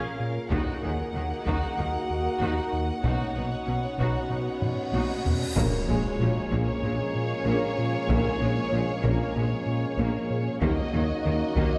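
A smooth synth bass riff, a glassy FM pad with chorus and its own reverb, rich violin and viola sections, and a dark French horn section open this futuristic, relentless cinematic cue at 95 BPM, with cello, double bass and distant taiko drums arriving at 0.5 seconds and a very quiet, boxy grand piano adding texture over a Bbm7, Ebm and Badd9 progression. A taiko fill and a huge, bright cymbal swell build to an impact at 5.6 seconds, where a lush symphonic violin melody enters alongside a dark trombone section and a mellow tuba. The whole blend sits in a wet scoring-stage reverb, in a hybrid of orchestral and electronic sound cut from a longer piece.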